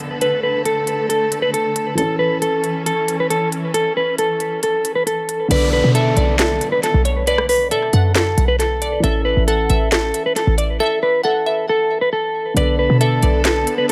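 Dark, boxy grand piano with audible action noise, rich bowed strings in the distance and a background downlifter open this brooding, melancholic trap excerpt in B minor at a half-time 136 BPM, quickly joined by an up-front, clean, fingered electric guitar melody with low-pass filtering and tape echo and a produced trap kit with sharp snare, crisp hats, handclaps and rim clicks, then at 5.5 seconds a crystalline, chorused wavetable pluck and a punchy, tight 808-style bass enter over the Bm7 and A changes, before the drums fall silent at 10.8 seconds and return at 12.6 seconds alongside the strings within an echo-heavy digital ambience.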